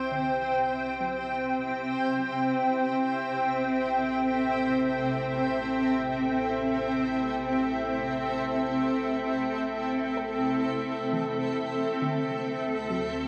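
Peaceful and luminous, this ambient passage, cut from a longer piece, drifts in a straight 4/4 beneath a vast, wet reverb that rings for seconds on end. Up front, a granular cloud pad holds sustained chords, its blurred, evolving texture full-bodied and gently detuned, moving from C to Am7 and settling on D7 at 11.7 seconds. Behind it, a soft, round pluck traces arpeggios through chorus and tape echo, its dark tone fading in across the whole 13.3 seconds. Lower still, a deep, rumbling drone supplies an ominous bass foundation that also fades in gradually from the background. Worn cassette tape colours the sound with warbling pitch drift, giving the luminous haze a hazy, aged quality.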